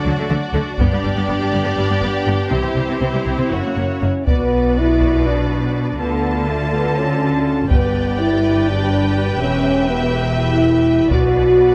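Dark and dramatic, this cinematic film-score cue in 7/8 builds for its first 4.3 seconds, with a distant, roomy French horn section holding sustained chords while a lush, distant violin section carries a second line and a clear, intense viola section plays the accompaniment. Bowed cellos in the background and smooth, rich double basses anchor the bass with vibrato, and a taiko ensemble struck with hard sticks enters at 0.8 seconds, sounding as if in a small room. Close, detailed microphones and light reverb keep the ensemble sound focused in this portion cut from a longer piece.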